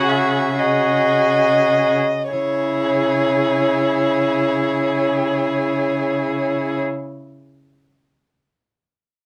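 A slow romantic movement for string quartet in C# minor, this short passage, cut from a longer piece, carries a solemn, yearning mood in a rubato 6/8 at 36 dotted-quarter beats per minute. The first violin sings the melody between C#5 and F#5 with smooth, even vibrato, while the second violin holds a distant, expressive line on G#4, colored by portamento. Beneath them, the viola's focused accompaniment moves between E4 and F#4 with a smooth top, and the cello sits up front on a low C#3 bass. All four bowed players sound from the opening through 6.8 seconds, each rich in tone. The tempo slows over the first 2.3 seconds as the harmony moves from a G#-over-C# sonority to C# minor, all set in a moderate studio ambience.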